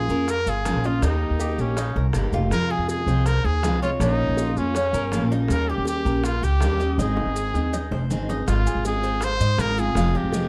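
Relaxed and sunny, this short excerpt from a longer piece sits in Cuban son and guajira style at a brisk 161 BPM in 4/4 with a straight feel, in A-flat major. Up front, a solo trumpet carries the melody with a bright, pop-style tone, vibrato and scooped notes, while a woody, thumpy pizzicato upright bass on gut strings anchors the low end just as prominently. A picked steel-string dreadnought guitar with fresh strings adds crisp accompaniment, and a Cuban tres, metallic with double and some octave-doubled strings, weaves arpeggios further back in the mix. Tight, high-tuned bongos sound distant, as if in a large room, and close, grainy maracas add a mellow shimmer. The harmony moves through Bbm, Eb, Fm and Eb7 to Ab, a drum fill at 7.0 seconds leads into a new section at 8.5 seconds on Ab6, all under light reverb and a dark overall production.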